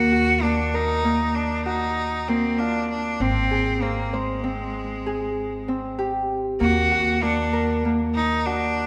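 Moving in an uneven 11/8 at 194 eighth-note beats per minute with a straight feel, this contemporary chamber piece is cut from a longer work and carries a hopeful yet restless mood. A single bowed cello carries the melody up front, its bright, nasal tone with light vibrato and an airy bow giving it a biting, earthy edge. Alongside it, a Celtic harp sits close to the listener with mellow, ringing fingerpicked arpeggios, while an upright bass plays pizzicato on gut strings for a woody, thumpy low end. All three instruments play together throughout the clip, tuned to A4 = 441 Hz. The harmony moves from Ebmadd9 to Abmaj7 at 3.2 seconds and settles on Ebm at 6.6 seconds. The recording was made in a church or concert hall, bathed in a wet church reverb with a long three-second tail.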